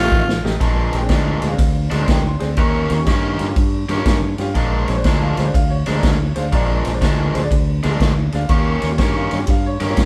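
Electric blues shuffle, laid-back and soulful and cut from a longer piece, opening with a raspy, growling tenor saxophone that sounds only until 0.6 s over a drum fill, while a brilliant, woody upright piano, an overdriven cranked stack guitar riff, a round, punchy fingered electric bass and a distant, roomy big-band drum kit with dark cymbals and a boomy kick carry the swung groove, the band playing live together in a moderately reverberant stone room.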